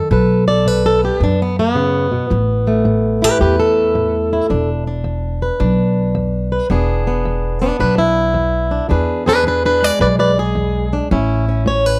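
Soulful and swaggering, this excerpt of acoustic country blues in E mixolydian swings along at 109 BPM, with a boxy, fingerpicked plugged-in acoustic guitar carrying the melody up front over a woody, dark pizzicato upright bass in a small room, the guitar stepping out for a solo from 8.9 seconds as the chords move from B7 through A5 and E7 to A.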